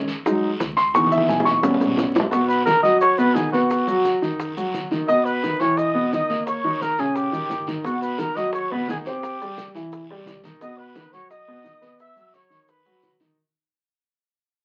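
A warm concert grand piano opens this sunny, danceable Afro-Cuban jazz excerpt alone, intimate and up front with deep bass and audible action noise, before a drum fill leads into the full band. At 2.3 s a mellow trumpet takes the melody in jazz style, distant and roomy yet up front, with light vibrato and scooped notes, while a breathy, bright metal flute with soft attack and expressive vibrato carries a higher second line in the background. Low-tuned congas with a thick skin and soft hands join tight, high-tuned bongos, raspy guiro and grainy maracas to drive the straight 4/4 feel. A woody, dark pizzicato upright bass sits very quietly underneath. The harmony moves through rich seventh and ninth chords, and from 2.3 s the music fades out as the piece is cut from a longer performance. The sound is that of a very old 78 rpm record, with vinyl crackle and a modest small-room reverb.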